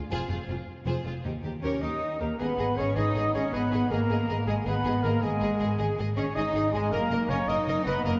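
Heroic adventure film score in G# minor, this swashbuckling passage moves at 106 BPM in a straight 12/8, cut from a longer piece. Lush bowed strings carry it from 0.1 s: a soft-attacked violin section sings the melody over a focused second violin line and intense viola accompaniment, while a rich cello section and a woody, up-front double bass section anchor the bass. At 1.6 s a distant, roomy French horn section adds sustained chords, a mellow trumpet adds stabs, and a very quiet clear clarinet and a pure silver flute take second lines, all set in a reverberant concert hall.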